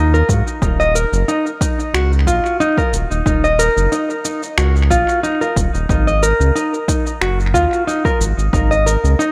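A lightly swung 16th-note groove at 91 BPM in 4/4 drives this meditative, earthy organic downtempo excerpt in Eb minor, where an up-front, full-bodied nylon-string guitar plays fingerpicked arpeggios through gritty vintage sampler crunch and dub echo over a round, deep analog bass with sidechain pumping, overdriven electronic shaker and finger snaps trailing tape echo, and a punchy overdriven electronic kick entering at 0.3 seconds, all set in light reverb across chords moving from Ab5 to Eb7(no3) and Ab7(no3) at 5.9 seconds.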